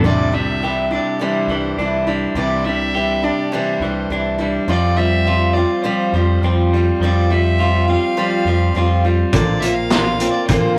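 A rough, tube-saturated rehearsal-room sound with a short booth ambience frames this jangly, open-road folk rock and heartland rock excerpt at 103 BPM in a straight 4/4, where a nasal, reedy fiddle carries the melody over a boxy picked ladder-braced acoustic guitar, a twangy, slightly broken-up electric guitar riff, a dark, round dub bass and a very quiet tonewheel organ with key click and chorus vibrato holding chords through Cadd9, Fsus2 and Bbadd9, before a gritty vintage drum kit with a tight kick enters at 9.3 seconds.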